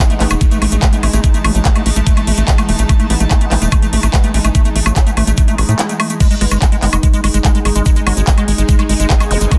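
A straight 4/4 groove of psychedelic trance drives this alien excerpt, with a knocking, up-front electronic kick and a tape-toned kit of metallic hats, handclaps, crash cymbal and woodblock under a punchy, saturated sequencer bass, a squelchy acid bass riff with dub echo, a grainy shaker, a morphing wavetable pad through phaser, a breathy pad with chorus, a faint juicy blip pluck from 0.2 s, and electronic swell-and-zap effects around a brief break at 5.8 s, all in a dense, heavily limited modern mix.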